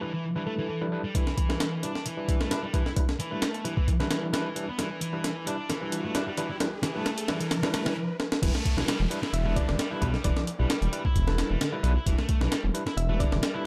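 A compressed, sampler-style breakbeat kit sits up front in this gritty, funky breakbeat passage, cut from a longer piece, with a thumpy kick, a high-tuned snare, hi-hat and crash in a small room, swinging lightly at 132 BPM in E minor. From the start, a thick fuzz guitar riff, bright and picked with vintage 12-bit sampler grit, shares the Em7 groove with barky, overdriven tine electric piano stabs that carry a medium tremolo and a filter sweep through a combo amp. The drums join at 1.1 seconds, and a very quiet electronic riser and downlifter slip in beneath a build-up marked by a drum fill and a brief stop. At 8.4 seconds the drop arrives with a dark, detuned saw bass, deep, rumbling and beating, pushed up front. A round, tine-like thumb-piano synth pluck with chorus and an old record sound returns at 9.3 seconds to play a mellow melody in the background, all of it held in light reverb.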